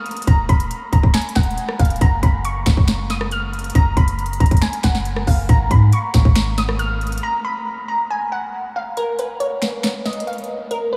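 An up-front trap drum kit, with its hard-clipped kick, sharp snare, crisp hats, finger snaps and rim clicks, drives this melancholic, hard-hitting half-time trap fragment at 138 BPM, moving from E-flat minor to G-flat before the harmony drops out. Beneath it, a deep, boomy 808-style sine bass with a fast attack sounds until 7.2 s, while a crystalline wavetable pluck with a noise layer, filter sweep, chorus, low-pass filter and tape echo carries the melody high above. The dreamy mix is soaked in cathedral reverb, and after a break the closing section from 9.0 s continues with the kick muted.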